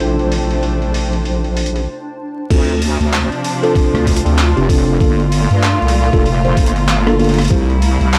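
Swung sixteenths in 4/4 give this swaggering glitch hop fragment its lurching gait, as boom bap sampler-style drums with overdriven crash, handclaps, muffled hi-hat and rim click sit beneath a heavy, saturated wobble bass that stays up front. Bowed chamber strings with vibrato hold smooth chords, and a mellow tine electric piano jabs out stabs through phaser and analog delay; both pump against the beat, and both sweep through a filter over the opening bars. A cloudy, evolving granular pad drifts in the background, and after a brief stop at 1.9 seconds an overdriven, thumpy pitched-down kick lands the drop at 2.5 seconds, all within a dry, gritty recording dusted with vinyl crackle.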